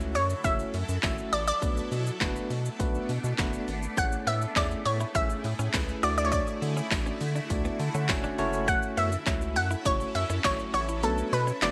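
Dance-pop at 102 BPM, upbeat and summery, cut from a longer piece and moving through F#m7, Bm7, Amaj7 and Dmaj7 chords. A bright, detuned analog pluck carries the melody up front with chorus and tape echo. Beneath it sit a tine electric piano, an ethereal pad with phaser and granular octave-up shimmer, and a round, deep analog bass, with the piano, pad and bass pumping with sidechain. A punchy, layered house drum kit with handclaps, shaker and hi-hats drives the groove, joined by a very quiet, jingly tambourine recorded close and dry. A clean, scooped electric guitar riff enters in the background at 4.0 s, the electric piano plays a fill at 7.5 s, and the kick drops out at 11.0 s.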